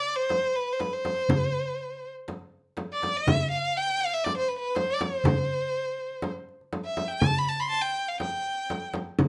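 A single bowed violin opens this festive, passionate Arabic maqam ensemble piece together with a crisp, metal-shelled darbuka, and a close, dry frame drum joins at 0.3 seconds. The violin carries the melody up front with a rich, focused tone and vibrato, moving between B4 and C6 before it stops at 8.9 seconds. The darbuka sits in a live room sound and the drums continue to the end of the cut at 9.3 seconds, all set in moderate studio reverb with detailed, close miking.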